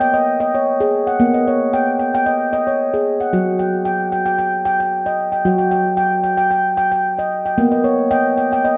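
This short cut from a longer piece moves at 113 BPM in 4/4, with a gentle swing on the sixteenths that gives its meditative world feel a loose, unhurried sway. A solo handpan carries the whole passage from 0.0 to 8.8 seconds, ranging from F#3 up to G5 and sitting up front in the mix. Its stainless steel tone is bright and ringing, struck with sharp finger strokes, and a delay trails each note into a soft, dreamy haze. The harmony rests on B, shifts to D# at 3.3 seconds, and returns to B at 7.6 seconds. A wet echo chamber reverb with a 1.8-second tail and a studio ambience surrounds the instrument, lending the gentle mood a spacious, floating quality.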